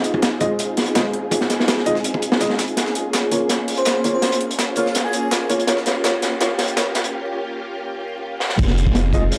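A soft, silky string machine sits up front through this dark, nostalgic drum and bass fragment at 165 BPM, holding sustained chords that move from Fm7 to Db6 and back, coloured by ensemble chorus and vintage 12-bit grit while a filter sweep builds across its first 8.6 seconds. Underneath, a crunchy, saturated breakbeat kit with dark cymbals, a tight kick and a rolled-off top drives the jungle feel, joined by a compressed, sampler-style layer of hi-hat and snare that stops at 7.0 seconds. A dark, boxy baby grand piano adds short stabs with audible action noise, low-pass filtering and dub echo, while an airy, dreamy lead floats in the background with chorus and vibrato for a brief phrase from 3.8 to 5.4 seconds. Drum fills punctuate the build before a break at 7.1 seconds, and at 8.6 seconds a deep, mellow 808-style bass lands on a long F1. The whole thing has a dry, gritty hardware character with light small-room reverb and vinyl crackle.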